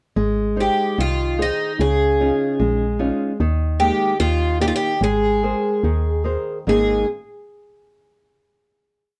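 A rubato 2/4 pulse at 74 BPM carries this tender and nostalgic fado-style ballad in Ab major. From 0.2 s a small, warm nylon-string guitar is fingerpicked up front in an oompah pattern of bass notes and chord figures, while a woody, round FM bass with a fast attack and a dark, decaying tone plays root and fifth on the main beats. At 0.6 s a picked twelve-string acoustic guitar enters with a motif-based melody of call phrases, its boxy parlour tone shimmering and octave-doubled, with audible finger squeak. The harmony moves from Ab through Dbadd9, Ebsus4 and Eb to Abadd9, which rings out as a final chord from 6.7 s. The whole piece sits in a modest small-room reverb and carries the worn character of old cassette tape, with a warbly pitch drift.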